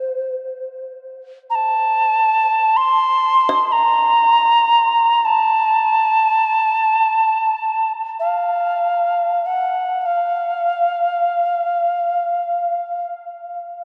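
Meditative and spacious, this world-music passage in free time is cut from a longer piece and led from the start by a bright, reedy alto ocarina whose clay tone, vibrato and crisp, chiffy attack sit up front. From 3.5 to 12.5 seconds a faint kalimba adds a woody, hollow-boxed texture of short thumbnail plucks with a vintage, band-limited colour. A huge, wet ambient reverb with an 8.6-second tail and a dark production surround both parts.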